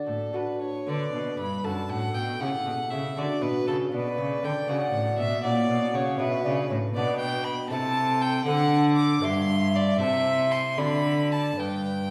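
A church or concert hall acoustic surrounds this recording, its wet recital-hall reverb giving the short section cut from a longer piece a glowing, spacious halo. It is a radiant, serene baroque-style sonata movement in a lilting 6/8 with a rubato feel, played from 0.0 to 12.1 s by a small period ensemble. A single bowed violin carries the melody up front with a warm, gut-string, reedy tone, while a baroque flute traces a soft-attacked second line in a pure, wooden voice with gentle vibrato. Beneath them, a fingerpicked lute supplies delicate, bright accompaniment from its double strings, some tuned in octaves. A lone bowed cello anchors the bass, also up front, with a rich, gut-string resonance, as the harmony moves to a new tonal center around 7.0 s.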